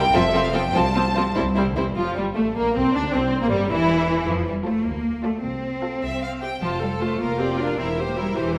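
Graceful and cheerful, this short excerpt from a longer classical-period movement for string orchestra moves quickly in 6/8 with a rubato feel. A distant, smooth violin section carries the melody from the background, while a second violin section plays a clear, focused line up close. Violas fill in the accompaniment with expressive portamento, and a lush cello section and an even, bowed double bass section anchor the bass. Vibrato colours every section, and the ensemble sits in the generous reverb of a recital hall. After a brief opening phrase, a second section begins at 2.0 seconds and runs to the end at 8.6 seconds.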